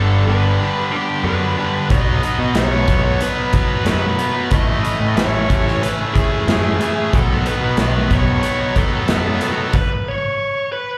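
A straight 4/4 pulse at 92 BPM drives this anthemic, restless quiet-loud alternative rock excerpt in B mixolydian, cut from a longer piece and heard as a live gig through a venue's PA with club reverb, moving from G to B, A and B before a stop at 9.7 seconds. A high-gain distorted guitar picks a bright riff with slapback echo over a growly fuzz picked bass, while a twangy, scooped electric guitar weaves clean, compressed arpeggios in the background, carrying slapback echo and digital delay. A big, acoustic rock kit with punchy kick and bright cymbals enters up front at 1.9 seconds, and a dark, bluesy overdriven lead guitar sings its melody through the stop until 11.0 seconds.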